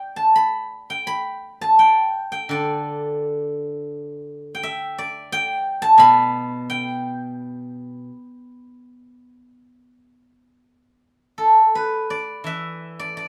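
Set in a free, rubato pulse around 85 BPM in 4/4, this elegant, pastoral excerpt of Chinese traditional solo plucked music features a steel-string zither sounding silvery and ringing up front, fingerpicked across a span from B2 to B5 in the G gong mode, with light reverb and a shift to new material at 11.0 seconds.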